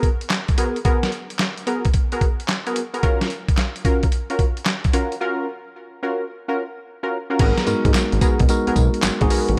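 Swung sixteenths drive this confident, bouncy new jack swing excerpt, where a gritty, compressed sampler-style kit steeped in gated reverb, with thumpy kick, medium-tuned snare, handclaps, hi-hat, tambourine and crash, sits up front under punchy, detuned polysynth stabs washed in chorus and delay over G#m9 and F#maj7. After a break from 5.2 seconds, a fat sawtooth analog bass arrives at 7.4 seconds, followed at 7.7 seconds by a worn, slightly out-of-tune tine electric piano heard through a combo amp.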